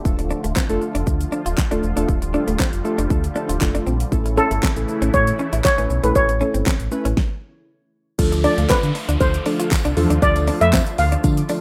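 A rough home demo mix with light reverb opens this bittersweet, confident dance-pop excerpt at 118 BPM in a straight 4/4, moving from Dm to A, where a punchy, up-front pop drum kit with fat snare, handclaps, shaker and crash joins a deep sine sub bass with octave, round detuned analog keys with chorus, and an airy supersaw swell in the background, all three pumping to the sidechain. A clean, direct-recorded electric guitar picks a compressed riff through lush chorus, and at 4.4 seconds a shimmering steel pan lead takes the melody up front with digital delay. After a stop at 7.2 seconds, the music returns to Dm at 8.2 seconds with a very quiet warbling unison pluck arpeggio, a jingly tambourine and an electronic downlifter in the background.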